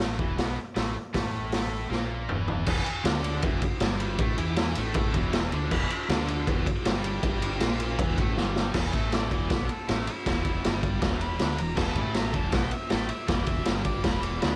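Driving straight 4/4 at 158 BPM in E minor, this menacing, swaggering garage rock clip pairs a biting, double-tracked overdriven guitar riff with a round, punchy fingered bass pushed through drive and a raw, boomy, gritty drum kit heard up front with cassette saturation and fills near 1.9 and 8.4 seconds, before a bright, close-miked harmonica with scooped notes takes a solo from 8.9 seconds in this dry home cassette recording.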